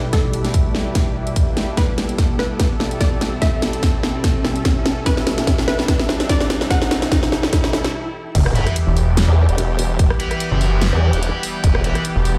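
Menacing and chaotic, this heavy wobble dubstep excerpt in E minor runs at 146 BPM with a swung, half-time feel, opening on a build-up where a lush supersaw pad pumps under a filter sweep, joined by a delayed unison pluck, a blurred, granular cloud pad, a background riser and sub drop, and a drum fill from a punchy, tape-warm kick and a dubstep kit with a huge snare. After a brief stop at 7.9 seconds, the drop lands at 8.3 seconds with an impact, unleashing a chorused, overdriven formant-sweep wobble bass and a snarling, growling distorted saw bass, both up front, while a bright, double-tracked overdriven electric guitar adds delayed stabs. The mix sits in light digital ambience, as if blasted through a big sound system in a bare stone room.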